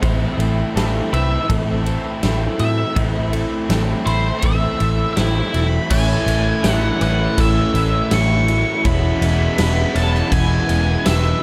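Shoegaze and dream pop rock, blissful and hazy in a dark production, built on a round, foam-muted fingered electric bass up front and a big-room arena drum kit with bright cymbals and a punchy kick, beneath three overdriven electric guitar riffs in the background (one with lush chorus, one with reverse reverb, one double-tracked and very quiet) and a clean direct-recorded guitar playing arpeggios through subtle chorus and digital delay, while an octave-fuzz lead guitar melody with distortion and delay enters at 1.1 seconds, and a mellow vintage string-machine viola pad and a jingly tambourine join very quietly at 5.9 seconds as the chords move from Amadd9 to Amaj7 and then E6.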